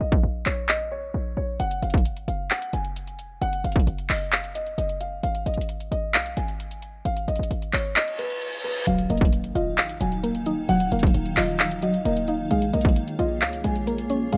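Trap-flavoured hip hop in Eb minor at 132 BPM with a half-time feel, this eerie, menacing cut from a longer piece rides on a dark, boxy grand piano melody with short sustain and delay, sitting high between Cb5 and Ab5. A short, punchy 808-style bass with a fast attack and decaying tail holds the low end up front from the start, while an electronic trap kit of handclaps, bright hats and a hard-clipped, overdriven kick arrives just after, opening with a break through 1.6 seconds. The harmony moves from Bbm through a rootless Ebmadd9 and an Ab5, and at 8.0 seconds the kick drops out, with an electronic reverse cymbal entering at 8.1 seconds and leading into an impact at 8.9 seconds. There the second section begins with a soft, round pluck in the middle register, its chorus, ring modulation and filter sweep lending a gently shifting colour, followed at 9.7 seconds by a granular cloud pad of detuned, blurred, slowly evolving chords. 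The rough home demo mix carries light reverb, with the drums standing loudest and the pad and effects tucked low beneath the piano.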